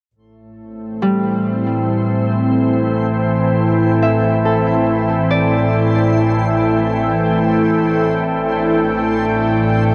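In a straight 4/4 at 70 BPM, this melancholic yet serene ambient excerpt in A minor rests on a single Am7 chord. A pure, up-front organ-like pad with ensemble chorus holds sustained chords. A mellow, ringing Celtic harp fingerpicks arpeggios through tape echo from 1.0 seconds. In the background, a tense, string-like bowed-like drone with vibrato hums, while a reversed, dreamy granular texture and a veiled, muted double bass section fade in from 0.2 seconds. The whole is bathed in huge reverb and the warbly pitch drift of worn cassette tape.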